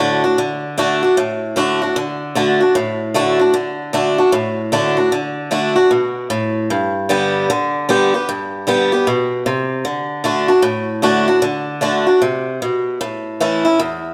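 A picked swing-style acoustic guitar plays alone and up front, bright and boxy, rolling through a retro, rollicking swung rock groove over D, G and A chords, its notes hanging in a wet stone-room reverb that gives it the live feel of a band playing together in one space, before this short cut from a longer piece ends at 14.1 seconds.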